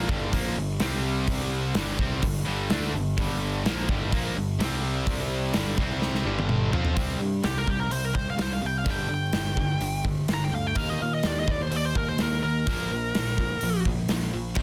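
A heavy, driving hard rock excerpt in G minor at 126 BPM opens with a cranked stack guitar and two bright, overdriven distorted electric guitars picking a riff in the background over a warm, punchy fuzz bass and an up-front gated 80s drum kit with a medium-tuned snare, punchy kick and bright cymbals; after a drum fill, one of the distorted guitars drops out at 7.0 seconds, and at 7.4 seconds a dark, bluesy overdriven lead guitar with slapback echo takes an up-front solo in a dry, dense, heavily limited mix.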